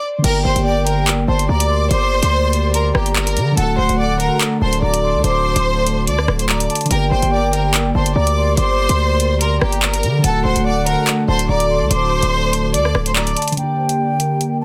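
A half-time drill groove at 144 BPM drives this ominous, cold hip hop excerpt in G harmonic minor, with an up-front electronic drum kit of hi-hats, rim clicks, handclaps and crash cymbal over a punchy, heavy 808-style bass that drops out at 13.3 s. Above the Gm and D chords, a rich, focused studio violin section carries the bowed, vibrato-laden melody through a low-pass filter and tape echo, while a breathy concert flute with a crisp attack traces an expressive second line, also through tape echo. A clean tine electric piano with phaser and low-pass filter fills in the accompaniment, a distant, roomy French horn section holds sustained chords in the background, and a filter sweep from 13.6 s closes out the dense, heavily limited mix.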